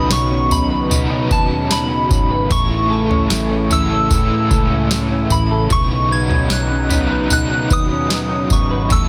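A dense, heavily limited modern master with light reverb frames this short dream pop passage at 75 BPM in B mixolydian, dreamy and blissful as it moves from Badd9 to A at 2.5 seconds and back at 5.7 seconds. A booming, up-front analog drum machine with a deep overdriven kick, crisp snare, tambourine and toms enters at 0.1 seconds alongside a dark, round, foam-muted fingered bass. A clean semi-hollow electric guitar plays arpeggios through ensemble chorus and digital delay, a raw double-tracked garage guitar adds overdriven picked accompaniment with tremolo, a hollow flute-like pad sustains soft chords in the background, and a pure FM synth bell carries the gentle melody high above through chorus, phaser and delay.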